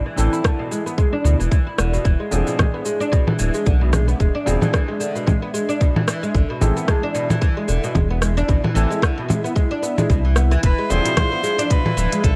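Meditative and mystical, this organic downtempo excerpt swings gently in 4/4. A woody, plectrum-plucked oud arpeggiates through a delay and low-pass filter over a felt-muted upright piano and an ethereal, detuned pad carrying chorus, reverb and 12-bit sampler grit. A round, dark analog bass pumps under a tight electronic kick and a kit of cabasa, congas, smooth hats and rim click, and at 10.6 seconds a bright, earthy bowed kamancheh joins them with portamento.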